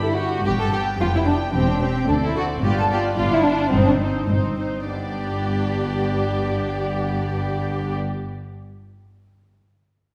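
Lively and cheerful, this brief cut from a quick classical-period orchestral movement in 2/4 sets a warm, softly attacked violin melody above a rich, expressive second violin line up front, with smooth viola accompaniment, cellos in the background and distant double basses holding the bass, all bowed in a rubato feel that slows from 2.1 to 4.9 seconds, heard from further back in a reverberant scoring stage.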